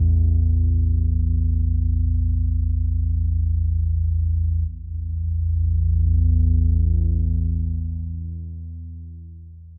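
Ambient in free time, this short fragment of a longer piece feels ominous and vast, tuned slightly sharp to A4 = 441 Hz. A single deep, rumbling drone carries the whole passage alone from 0.0 to 8.3 seconds, sitting low between A1 and E2 on an A5 chord. Its tone blends triangle and sawtooth waves, detuned and wave-folded into a dark mass that sits up front in the mix. The sound fades in with a slow attack, holds as a sustained tone, and trails off on a long release, bathed in its own built-in reverb. A wet, cathedral-like space with a 5.1-second decay surrounds it, and the passage shifts into a second section at 4.7 seconds.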